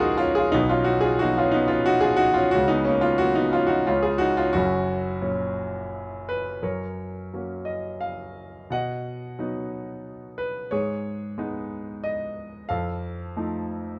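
A clear grand piano plays alone throughout this 14-second excerpt, its smooth, vintage tone sitting up front with short sustain. The music is lyrical classical solo piano in F# major and 3/4 time, moving at 89 BPM with a rubato feel that lends it a hopeful, sunny mood. The piano ranges from F#1 up to F#5, and the harmony passes through chords such as B, F#/C# and C# before settling on F#, then moves through B and G#m to close on F7 at 12.7 seconds. The phrase is stated twice, with the second statement beginning at 6.6 seconds. Light reverb and a dark production surround the instrument, and the passage is cut from a longer piece.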